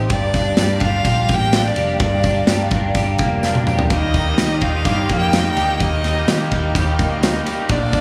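Jangly indie pop at 126 BPM with a nostalgic, bright mood, this excerpt moves from Gm7 to Eb over a twangy, slightly broken-up arpeggiated electric guitar through a small old amp with chorus and tape echo, a round, foam-muted vintage fingered bass, a swirling phased analog pad in the background, and a punchy, up-front rock drum kit whose fill at 3.4 seconds ushers in a biting overdriven guitar at 3.9 seconds, while an intense, airy-bowed solo violin carries the melody with tape echo over a very quiet, lush violin section on the second line and a jingly tambourine tucked close and dry beneath it all.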